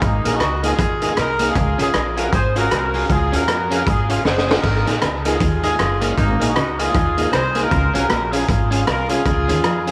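A swung ska groove at 156 BPM in 4/4 drives this upbeat, cheerful excerpt from a longer piece: a gritty, punchy garage drum kit with a high-tuned snare sits up front with tape echo, a fill lands at 4.2 s, and a woody, growly upright bass thumps underneath around an Absus2 chord. A distant, roomy horn section with light vibrato and tape echo carries the melody up front, while a mellow tonewheel organ with overdrive, chorus vibrato and fast rotary speaker adds percussive stabs and a slightly broken-up picked electric guitar accompanies in the background. At 4.6 s a dark, clean, fingered electric guitar slips in with a very quiet low riff, all set in a moderate echo-chamber reverb.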